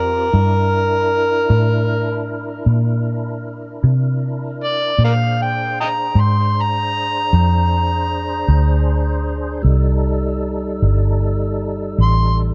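Laid-back and rollicking, this slow blues in a straight 12/8 is cut from a longer piece and features an overdriven, gritty harmonica taking a jazz-style solo up front, with light vibrato, tongue slaps and scooped notes trailed by analog delay. A fat, lightly overdriven tonewheel organ holds sustained chords with key click, chorus vibrato and a slow rotary speaker, while a dark, round, foam-muted electric bass sits up front beneath them over C7, Bb7 and a rootless F9. Light reverb and small-room ambience give the mix an echo-heavy character.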